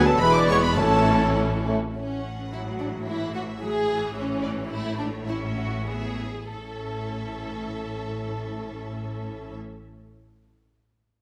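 Graceful and spirited, this quick classical-period movement for symphony orchestra moves in 2/4 between 92 and 111 BPM in A major, with a rubato feel and a slowing down from 3.6 to 6.5 seconds, and it is cut from a longer piece. In the opening moments the full wind and brass complement gathers briefly: a pure, hollow silver concert flute and a distant oboe add very quiet second lines, a mellow clarinet sits in the background, a soft-attacked bassoon fills out the accompaniment, and a dark, roomy trumpet section punches out stabs until 1.4 seconds. A French horn section holds smooth-topped chords from 0.5 seconds, while timpani struck with hard mallets on calf heads sound an articulate A2 in the background. Throughout, a focused chamber violin section carries the vibrato-rich melody, shadowed by a close studio violin section singing an expressive second line with portamento. Beneath them, a distant, even viola section supplies accompaniment, and a gliding cello section joins a smooth double bass section on the bass. 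The harmony rocks between A and E chords, and a recital hall reverb lends the ensemble a wet, spacious glow.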